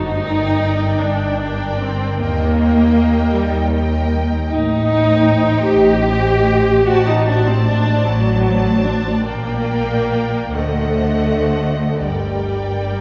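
Up-front violas with smooth, even vibrato, background cellos with expressive portamento, and distant double basses open this yearning, melancholic slow romantic movement for string orchestra in a rubato 6/8, before two violin sections enter at 0.2 seconds: a focused high melody with vibrato above a warm, lightly vibrated second line, set in a dark, wet church reverb.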